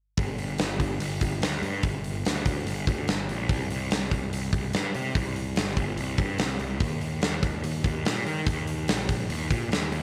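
A straight 4/4 hard rock groove runs through this menacing, heavy fragment of a longer piece, where a big-room acoustic drum kit with a punchy kick, medium-tuned snare and hi-hat, its top rolled off, sits up front beside a picked electric bass whose bright, growly fuzz and overdrive snarl from low G1 up to Eb3, all under a light reverb.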